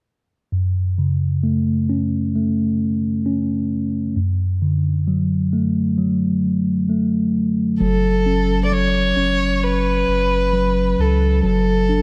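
An expressive, bowed solo violin carries the melody from 7.8 seconds, its soft attack, vibrato and portamento sitting up front in this longing, melancholic slow pop fragment cut from a longer piece. Underneath, a mellow, clean tine electric piano plays the accompaniment from 0.5 seconds, moving between F# minor and D over F#, and a deep, full sub bass with an added octave enters alongside the violin with sustained, rounded notes. A lush hall reverb and a dark, warm production give the recording a spacious, wistful glow.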